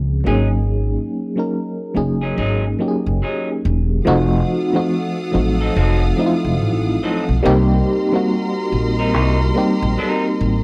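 A sultry, smooth R&B and neo-soul excerpt in a loose swing, where a dark, full-bodied FM electric piano with tremolo and a woody, thumpy pizzicato upright bass sit up front, a bright, twangy, slightly broken-up electric guitar adds a picked second line, and after an opening Ab7sus4 a lush bowed string section enters at 4.0 seconds with sustained chords over F7b9 and Cm7, all captured in a dry, close 1970s-style studio sound.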